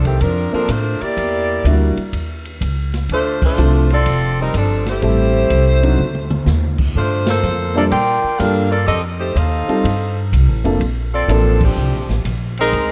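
A bright, tightly knit saxophone section carries the melody up front, close-miked with a light vibrato in a classic jazz style. Underneath, a woody, thumpy upright bass is plucked with a strong presence, while a baby grand piano with short sustain adds warm accompaniment from 0.5 to 11.6 seconds. The acoustic drum kit sits further back with an airy, polished hall sound, its dark cymbals, medium-tuned snare and punchy kick driving a swinging big band feel. The band hits accents together at 3.3, 7.2 and 11.5 seconds, and a short drum fill lands around 6.0 seconds, all within a single swinging section cut from a longer piece. Light reverb and a dark, warm production give this brassy passage a warm finish as the harmony moves through a varied progression back to its opening Bbmaj9.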